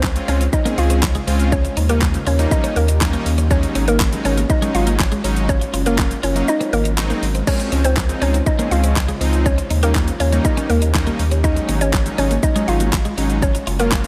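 Light reverb and a digital ambience lend this summery, upbeat dance-pop passage a polished, airy sheen, and it sounds cut from a longer track. Up front, a punchy, layered electronic drum kit with a fat snare, warm hats, handclaps, shaker and crash drives a straight feel, beside a deep, thick, saturated sub bass that pumps with sidechain. A bold, detuned sawtooth polysynth fills out the chords with a bright, chorused, pumping glow, while a mallet-like FM pluck carries the melody with a woody, round, warbling vintage tone that trails into diffuse ambient delay. Further back, a clean, compressed twelve-string electric guitar picks a riff with subtle chorus, and a very quiet, ethereal pad sustains mellow chords beneath everything. The harmony cycles through lush major-seventh and dominant colours across two matching drop sections, with the kick falling away between 6.5 and 7.5 seconds before the second pass begins.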